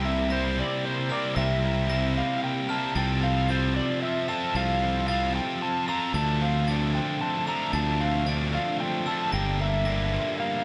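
Cathartic and brooding, this post-rock excerpt at 113 BPM in 3/4 sets an overdriven slide guitar melody against sparkling glockenspiel and clean twelve-string arpeggios in the background, with bright distorted and thick fuzz guitar riffs and a growly, up-front fuzz bass, all in a dark production with light reverb, moving through C7, Fmaj7/C, Dm7 and Gm7.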